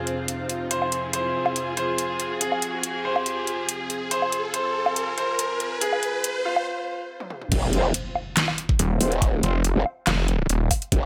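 A clear baby grand piano opens this aggressive, heavy half-time dubstep excerpt with a dub-echoed melody over dark, floating, bowed strings that pump with the sidechain, a mellow, airy pad in the background and an electronic riser, while a dubstep kit with a deep snare, metallic hats, claps, toms and woodblock plays throughout. After a short break and drum fill, the drop lands at 7.5 seconds with an impact, a knocking electronic kick and a wobbling, formant-filtered growl bass, joined by tight, soft-attack brass stabs in the background. At 8.8 seconds a snarling, detuned sawtooth bass with distortion adds more grit, with the drums and basses up front in light digital ambience.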